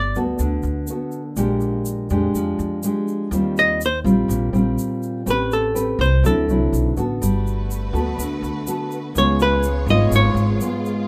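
Romantic and sunny, this bossa nova excerpt features a dark, clean hollow-body archtop guitar carrying the melody up front, sounding briefly at the start and then returning at 3.6 seconds, over a thumb-plucked nylon-string guitar with fresh strings and a woody, growly pizzicato upright bass. A grainy, close and dry egg shaker ticks along from 0.2 seconds, while a lush bowed string section with soft attack and expressive vibrato enters at 7.2 seconds with sustained chords. Light reverb frames the jazzy harmony, which moves through rich chords such as Gmaj9, Eb69 and Am9 before landing on C#7.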